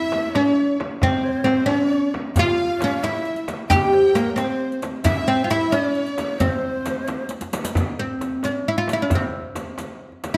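Persian modal ensemble music in 6/8, passionate and warm in mood, cut from a longer piece, with a woody, fretless oud on double strings carrying the melody up front over a tight tombak and a deep, distant frame drum, joined at 2.4 seconds by the dark jingles of a dry riq. A breathy, mellow ney in the background and an expressive bowed violin section with vibrato and portamento both play a second line until 7.3 seconds, when a drum fill leads into a new section for oud and percussion alone. A moderate recital hall reverb surrounds the ensemble.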